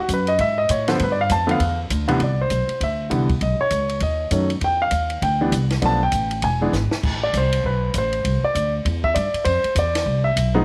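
A grand piano opens the excerpt, playing the melody as a solo that carries through to the end, with an intimate, close sound and audible action noise. An upright bass and a compact cocktail drum kit join almost at once in this relaxed, swinging jazz piano trio at 198 BPM in 4/4, with a swung eighth-note feel in C major, tuned to A4 = 442 Hz. The pizzicato bass sits up front with a woody, growly, thumpy tone. The dry drums pair dark cymbals with a high-tuned snare and a tight kick, and a short drum fill lands between 6.7 and 7.0 seconds. The harmony moves through chords such as G7, Cmaj7, Em7, Bm7b5 and Amadd9, all set in light reverb with a small-room ambience.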